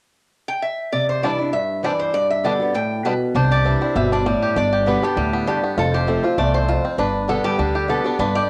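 Lively and driving, this short bluegrass excerpt swings in 4/4 at 198 BPM in C major, with a metallic, nasal lap resonator guitar taking the slide melody from 0.5 seconds alongside a twangy, percussive banjo under plate reverb. A boxy, ladder-braced acoustic guitar with old strings picks the accompaniment through Cadd9, G and F, and a thumpy gut-string upright bass enters at 3.3 seconds as the second section begins. The moderate booth ambience and cassette home recording keep every part up front and intimate.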